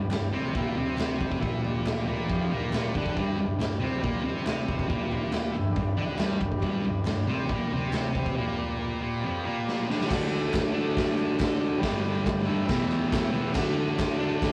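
A straight, driving 4/4 beat from a gritty, saturated garage drum kit powers this swaggering, rowdy slice of garage rock, its punchy kick, medium-tuned snare, hi-hat, crash and toms sitting up front in a pumping stone room. A thick, double-tracked fuzz guitar plays a bright, picked riff that carries the low end, while a vintage combo organ holds mellow, clean sustained chords further back, bathed in spring reverb. Very quiet group handclaps add a crisp, close and dry layer on top. The harmony rests on G until a drum fill at 9.7 seconds tips the band into a new section at 10.1 seconds, moving through D, G and Em before landing back on D. The whole thing has the rough character of a rehearsal-room recording on cassette tape, with warm saturation and a wet studio reverb, and it is cut from a longer piece.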